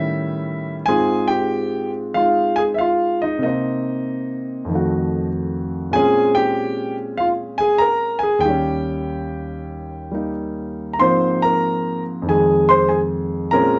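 A swing at 95 BPM in 4/4, with eighth notes swung at 66% and a rubato looseness, carries this short cut from a longer solo jazz piece in Ab major. A concert grand piano plays alone throughout, from 0.0 to 13.8 s, ranging from Eb2 up to C6 with a deep bass, natural tone and up-front presence. The mood is sophisticated and swinging, opening on an A7#11 before settling onto Ab6 at 0.9 s. From there the harmony moves through Cm7, F7b9, Bbm9 and Eb7, resolves to Ab69 and closes on Fm7. A moderate studio reverb gives the warm piano a modest sense of room around its sound.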